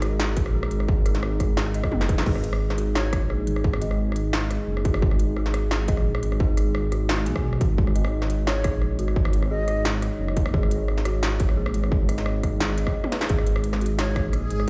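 A dark, cinematic stretch of half-time drum and bass at 174 BPM opens on a moody, detuned analog pad holding chords in the background with chorus and sidechain pumping. Alongside it come eerie, inharmonic FM bell arpeggios carrying chorus, 12-bit sampler grit and dub echo, a deep, rumbling detuned saw bass sitting up front, and a tape-warm industrial kit of clanging snare, crisp hats, rim clicks, toms and crash cymbal. A distorted electronic kick joins at 0.4 seconds, and the whole passage plays as a drop punctuated by brief drum fills. From 3.0 seconds a breathy, close-miked silver flute drifts in for short, slightly unsteady straight-tone phrases, trailed by dub echo. At 13.6 seconds a reversed, granular texture with a soft attack rises in the background, dreamy and bright. The mix carries a light stone-room reverb, as if played on a big sound system in a bare room.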